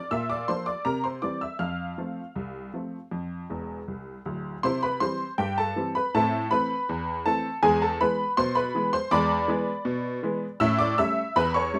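Playful and cheerful, this short cut from a longer ragtime piece sets a lone honky-tonk upright piano in 2/4 at 80 BPM with a straight feel, moving from F major to C major at 4.6 seconds. The detuned, jangly upright sits up front with a bright, vintage character and short sustain, ranging from D1 to F6 under light reverb. A fill at 3.5 seconds leads into the new key, where chords pass from C through Am and E7 to A7.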